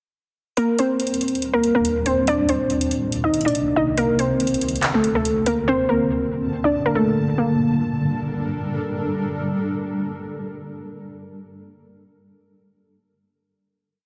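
A warbling, dusty pluck and a trap drum kit open this short, eerie hip hop piece together at 0.6 seconds, the pluck carrying a looping melody doubled in octaves and repeated like a sampled loop, its lo-fi, detuned tone colored by chorus and digital delay. The electronic drums sit up front in a hard-hitting half-time trap beat, with handclaps and metallic hi-hats that break into fast rolls, sounding as if re-recorded in a large room. A granular cloud pad fades in to join them, holding blurred, full-bodied sustained chords that move from Ebmaj7 through Cm7 and D7 to Gmadd9, wrapped in its own reverb. The drums drop out at 5.6 seconds, and from 7.4 seconds the piece settles onto a final chord, where the pluck fades away and the evolving pad rings on to the end. A light digital ambience surrounds the parts, and the master is dense and heavily limited in a modern style.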